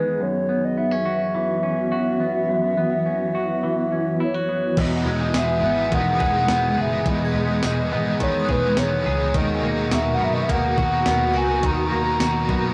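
Dream pop in E lydian at 105 BPM in a straight 4/4, this ethereal, dreamy excerpt is cut from a longer piece and opens with a hollow, woody, clarinet-like synth lead carrying the melody through chorus and analog delay. Beneath it, a granular cloud pad sustains blurred, evolving chords in its own reverb, while a clean, compressed semi-hollow electric guitar plays fingered arpeggios up front with subtle chorus and analog delay. At 4.8 seconds the harmony moves from F#7sus4 to Emaj7 and the band fills out: an overdriven, bright picked guitar adds accompaniment with harmonic tremolo and ensemble chorus, a dark, round, foam-muted bass enters, and a 12-bit drum machine brings a thumpy kick, medium-tuned snare, hi-hat, tambourine and crash cymbal with a tape-warm, sampler-style sound. A very quiet, inharmonic FM synth chime rings in high above from 5.0 seconds, and the chords shift to Bmaj7 at 9.3 seconds. 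The recording is dry and gritty, with a cassette-tape hardware character.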